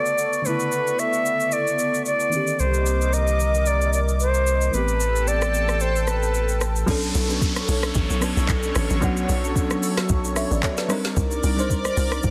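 Amapiano with a hypnotic, soulful feel: a pure, up-front concert flute with delay carries the melody over a sparkling bell-like electric piano and a lush, detuned unison pad that pumps with the sidechain, while a soft-kicked R&B kit with a woody, softly clipped snare and metallic hats drives it all. A round sine sub bass enters at 2.6 seconds to anchor the first section, and at the drop at 6.9 seconds a tight, punchy log drum bass takes over alongside an electronic downlifter in a dense, heavily limited mix.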